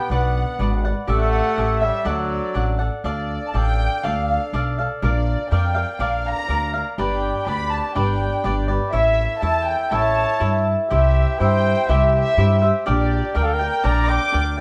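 Mexican folk mariachi in a proud, romantic mood, moving at 122 BPM in 2/4 and shifting from D major to D minor at 3.1 s. A dark, intimate violin section carries the bowed melody with light vibrato, a smooth top, slapback echo and plate reverb. A clear, classical-style trumpet plays a soft-edged second line that drops out at 2.8 s and returns at 9.9 s, over a crisp, picked cavaquinho and a woody, growly pizzicato upright bass up front in a moderate studio room.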